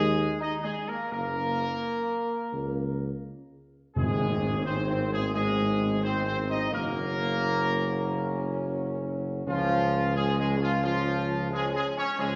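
Solemn and majestic, this classical ceremonial fanfare moves at a stately, straight pulse in four, and it is cut from a longer piece. A clear, tight trumpet section carries the melody up front with a vintage edge, while a mellow French horn section with light vibrato and a smooth-topped trombone section sustain chords beneath it, the horns sounding distant and roomy. A mellow tuba anchors the bass with its own light vibrato, standing forward in the blend. At 4.0 seconds the band lands a collective accent as soft-malleted timpani with calf heads strike a round note in the background, and a very quiet, dark tam-tam rings on until 6.7 seconds. The whole ensemble sits in a wet scoring-stage reverb, heard from further back in the room with a softened, rolled-off top end.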